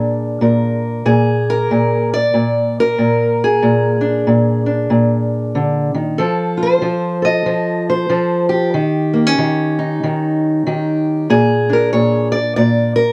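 Acoustic country blues in a rollicking, laid-back mood, this short excerpt cut from a longer piece features a single fingerpicked steel-string acoustic guitar playing solo throughout its 13.1 seconds. The guitar has a dark, boxy parlour tone and sits up front in the mix, spanning from Bb2 up to Eb5. The music moves in a swung 4/4, with the eighth notes carrying a light, easy swing. The harmony follows a blues turn, opening on Bb7 and moving through F7 at 6.2 seconds and Eb7 before returning to Bb7. The sound is dry and close, in the manner of a 1970s studio recording, with just a modest booth ambience around the instrument.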